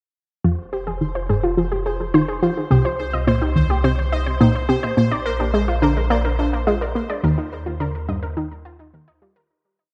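At 0.4 s a bright, nasal analog pluck sets off an 8-step sequenced riff in the low register, joined at once by a round, deep bass holding the roots and a warbling, lo-fi pluck spinning a 7-step arpeggio that drifts against the bar, with a filter sweep running across it. This is hypnotic, expansive sequencer-driven space music in F dorian at 106 BPM in a straight 4/4, moving through Fm, Cm, Bb and Ebsus2. The riff pluck sits up front with detuned sawtooth and wave-folded edges under chorus and delay, while the dusty arpeggio layer, also chorused and delayed, sits further back and keeps evolving. From 0.7 s a pulsing, tempo-synced gated texture holds a single high C5 with a slow attack, chorus and its own reverb, hovering faintly above the other parts. A moderate spring reverb and an echo-heavy mix open up the space before the whole piece fades out from 6.5 s to its close at 9.5 s.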